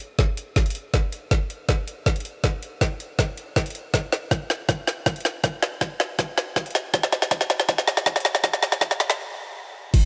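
Playful and lush, this future bass excerpt in half-time 4/4 is a drum-only build-up, with an up-front trap kit of woody snare, metallic hi-hats and crash cymbal running a fill through a filter sweep while an overdriven, knocking electronic kick joins at 0.2 seconds, all in light digital reverb until a stop at 9.2 seconds.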